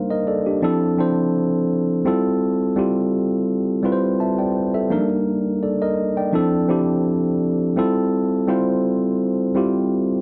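Relaxed and warm, this short R&B passage moves at an easy 84 BPM in 4/4, with a light swing on the sixteenths and a home key of F major. A solo tine electric piano carries the whole 10.2 seconds on its own, ranging from F3 up to A5. Its tone is worn and slightly out of tune, yet clean and direct, sitting up front in a dry, close recording with a 1970s studio character. The harmony circles through Ebmaj7, Dm9/F and Fmaj9, then repeats the same pattern from 4.9 seconds. Cut from a longer piece, it plays as a single unhurried section tuned a touch below standard pitch.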